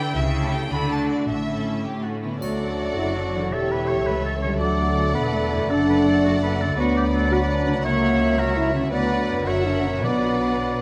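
A smooth-topped French horn section enters at 2.2 seconds with sustained chords, standing out in this stormy, urgent excerpt from a fast romantic orchestral movement in a straight 6/8 at roughly 104-114 BPM, moving from D major to B minor at 6.8 seconds. Focused, lush first violins carry the melody over expressive, soft-attacked second violins, a clear oboe and a dark clarinet on supporting lines. Even violas, a mellow bassoon, ringing harp arpeggios and distant cellos fill out the background, woody double basses anchor the low end, and a faint triangle touch adds a glint. Hard-mallet timpani strike dry and articulate at 10.0 seconds, and a moderate scoring-stage reverb gives the orchestra depth.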